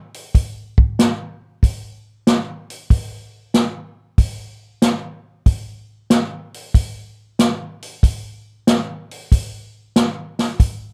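An open acoustic jazz drum kit plays from 0.1 s to 10.8 s at a greasy, swinging 94 BPM in 4/4, its hi-hat, medium-tuned snare and boomy kick sitting up front in a moderate club reverb with a dark, natural small-room sound in this short cut from a longer piece.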